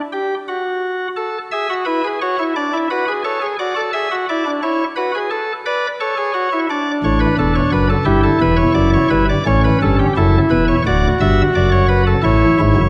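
A chamber organ on a nasal cornet solo stop sits up front with a distinct chiff, carrying an elegant, lively baroque-style four-part fugue in 4/4 at 87 BPM with a straight feel, spanning D1 to E5 and tuned slightly low to A4 = 437 Hz. The harmony moves through A, Bm7/D, D and Em7 before settling back on A at 12.2 seconds, in this short cut from a longer classical piece. A wet concert hall reverb with a 2.3-second tail surrounds the organ, and the top end is rolled off above 11.0 kHz.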